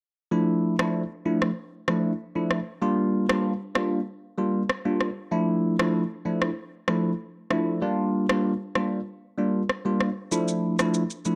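This afrobeats excerpt in D minor moves at 96 BPM in a straight 4/4, with a smooth, sultry mood. A bell-like tine electric piano enters at 0.3 seconds and carries the accompaniment between F3 and F4. Its bright, clean tone sits up front, colored by a phaser. From 0.8 seconds, an electronic rim click and shaker supply the drums, produced and forward in the mix. The harmony rocks between Dmadd9 and Gm7 every few seconds and settles back on Dmadd9 at 10.3 seconds. Light reverb and digital ambience frame a dark, warm production.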